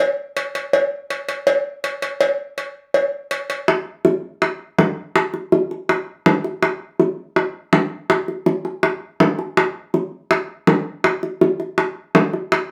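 Latin percussion at 163 BPM in a straight 4/4, danceable yet relaxed, with round, low-tuned acoustic cowbell and bongos played with soft hands, compressed and saturated and sitting up front in a wet studio reverb from 0.4 seconds, the piece moving into a new section at 3.7 seconds in this short cut from a longer work.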